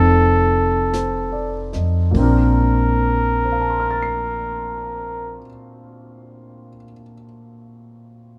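Romantic and late-night in mood, this short fragment of a jazz ballad moves at a slow 47 BPM in Bb major with a gentle swing, easing back in tempo over its opening seconds. A breathy, mellow trumpet carries the melody with scooped notes and a smooth top, sitting up front before it stops at 5.4 seconds. Beneath it, a grand piano with long sustain and audible action noise provides intimate accompaniment and is the only part heard through to the close at 8.4 seconds. A woody, growly upright bass plucks a thumpy low line with steel-string bite, while a vintage brush kit of hi-hat, kick and snare, soft and rolled-off on top, appears only briefly between 0.9 and 2.6 seconds. The sound is dry and close, and the harmony settles from F7 onto a lush Bbmaj9.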